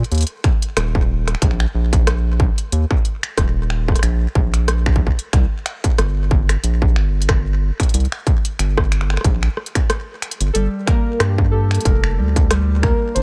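A round, deep analog bass sits up front through this glitchy, melancholic IDM excerpt at 92 BPM with a light 16th-note swing, alongside an industrial kit of finger snaps, crisp hi-hats and rim clicks treated with digital delay, and is soon joined by a distorted electronic kick. After a break and drum fill, warbling, lo-fi synth keys under chorus and phaser arrive at 10.5 seconds, followed at 10.6 seconds by a bright, ringing Celtic harp with delay over a G minor chord, all in a dry sound.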